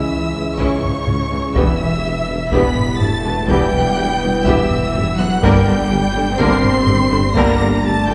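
Tense and futuristic, this cinematic cut from a longer hybrid orchestral and electronic score sets lush bowed strings against electronics: a rich high violin melody rides over a darker, more distant second violin line, with viola, cello and a very quiet double bass section beneath, alongside a nasal, evolving analog drone with chorus and a growling distorted saw bass. A close-miked tuba adds weight below, while bright trombones and mellow French horns hold very quiet chords from 0.6 s to 7.5 s, and a close taiko ensemble struck with hard sticks enters at 0.6 s. The whole sits in a wet scoring-stage reverb, heard from further back in the room, as the harmony moves from C#m through Em to Gm.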